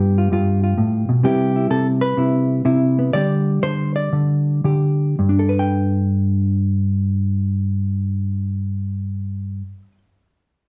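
Solo jazz on a hollow-body electric guitar, warm and swinging, moving at around 110-130 BPM in 4/4 with a swung eighth-note feel in G mixolydian. The guitar plays alone for the full ten seconds, spanning G2 to G5 with a dark, clean, fingered tone that is compressed and sits up front. The harmony travels from G7 through Cmaj7 and Dsus4 before settling on Gadd9 at 5.2 seconds. Between 1.2 and 5.2 seconds the tempo slows down before the final chord. A wet studio reverb places the listener further back in the room, giving the instrument a roomy halo. The recording is cut from a longer piece.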